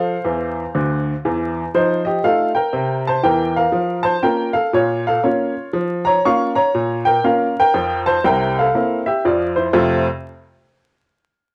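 Stride-piano jazz at 120 BPM in F major, playful and exuberant with a swung feel, this cut from a longer piece features a bright, woody upright piano played solo and up front with audible action noise, adding a fill from 0.3 to 1.7 seconds as the harmony moves through F7, Bbm and C7 before landing on F, then falling silent at 10.1 seconds, its cassette-tape tone steeped in wet spring reverb, studio ambience and vinyl crackle that give the home recording an intimate character.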